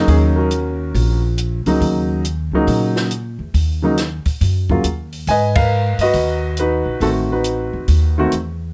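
A lightly reverberant, intimate sound opens this brief cut from a longer jazz piano trio piece, with piano and bass up front and the drums sitting lower in the mix. The mood is smoky and late-night, moving at 138 BPM in 4/4 with a swung eighth-note feel in Eb minor. A concert grand carries the melody between Db3 and Ab5, its deep bass and audible action noise giving it a close, natural presence. Beneath it, a pizzicato upright bass with steel strings and a woody tone holds the low end from A1 to Bb2, while a compact cocktail kit of hi-hat, kick, ride and snare adds dark cymbals, a high-tuned snare and a punchy kick in a dry, acoustic voice. The harmony moves from Ebm7 to Abm9 at 5.3 seconds, the band hits an accent at 5.5 seconds, and an Adim7 arrives at 7.0 seconds before the fragment ends.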